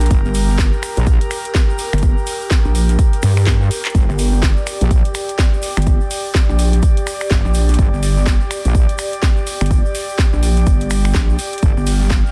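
Bass house in G minor at 125 BPM, this short excerpt struts with a swaggering, gritty mood and a 16th-note swing. Two up-front basses carry the weight: a pulsing pluck wobble bass, detuned and mellow, sits on its low notes from the start, while a saturated sawtooth wobble bass with overdrive and chorus growls from 0.1 to 11.7 seconds, both pumping with sidechain compression. The punchy, layered electronic kick drives the groove, joined by a house kit of finger snaps, handclaps, a cracking snare, metallic hi-hats and ride cymbal in studio reverb, with a drum fill at 3.5 seconds. A grainy tube shaker sits distantly in the background, and an airy, breathy pad with a slow attack and long release floats above, treated with chorus and sidechain pumping. The mix is dry and dense, with a heavily limited, loud modern master.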